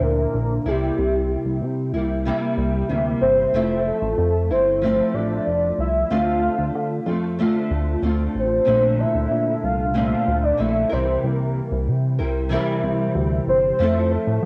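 A soft, octave-layered synth lead sings a round, dark melody over fingerpicked nylon-string guitar and a glossy, nasal chorused synth bass from the very first second of this nostalgic, sunny bedroom-pop fragment, moving at a straight 94 BPM in 4/4. The lead carries tremolo, ensemble chorus, plate reverb and analog delay, while the small, acoustic guitar is coloured by chorus, vibrato and cassette tape, and the mellow bass adds a retro filter pluck underneath. Chords drift from Bbadd9(#11) through C7, Fmaj7 and Dm7 to Bbmaj9#11, then back through C7 to reach Fmaj7 at 13.8 seconds, all within a moderate room and a homespun cassette recording.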